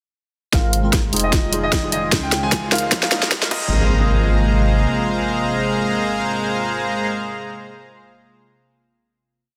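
Future bass at 151 BPM in a lightly swung, half-time 4/4 feel in Ab major, this lush, bright piece opens on a build from 0.5 s in which a brilliant concert grand piano repeats a high riff melody and a smooth, up-front detuned supersaw holds chords with syncopated pushes, both under filter sweeps and sidechain pumping, over glassy digital keys in dotted-rhythm chords, a breathy pad entering at 1.1 s, a thick saturated sub bass, a hard-clipped overdriven kick and a sharp trap kit with hat rolls and crash, while a very quiet riser and impact carry it into the final hit at 3.7 s, where the drums stop and the piano, keys, pad and supersaw ring on in a hall reverb inside a dense, heavily limited master.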